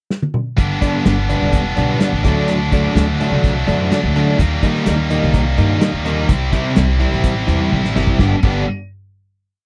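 A bright, overdriven electric guitar sits up front with short syncopated chords, colored by analog chorus and slapback echo, in this short, wistful yet carefree indie rock piece in G major at 126 BPM. An acoustic drum kit played with bundle sticks opens with a fill over the pickup bar before settling into a big rock groove, its tight kick and medium-tuned snare close and present in a small room, with another fill at 7.7 seconds. A high-gain distorted guitar strums bright picked chords beneath, while a pizzicato upright bass with steel strings adds a woody, thumpy, syncopated riff low in the range. The harmony moves from G through D, Eb and C before landing back on a final G chord at 8.2 seconds. The sound is dry and close, in the manner of a 1970s studio recording with little reverb.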